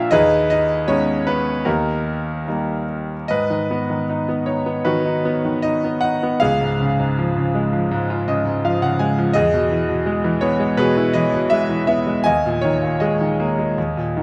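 Wistful and dark, this short classical excerpt features a lone concert grand piano played with lyrical rubato, its bright, brilliant tone carrying a worn, intimate edge, with deep bass, long sustain and audible action noise set up front. Harmonies drift from G#m through C# and E before settling on a suspended D# chord near 12.2 seconds, and a brief piano fill arrives at 7.9 seconds. A moderate concert hall reverb lends the close, present sound a gentle sense of space.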